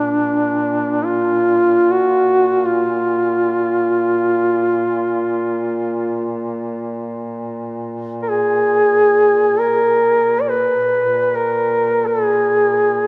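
In free time, this solemn, longing Caucasian folk lament in Bb phrygian dominant, cut from a longer piece, carries a mellow, up-front duduk melody between D4 and D5, shaped with vibrato, soft attacks and scooped notes, over a distant, roomy second duduk holding a warm Bb2 drone with its own vibrato and scoops, both sounding throughout the 13.1 seconds within a moderate cathedral reverb.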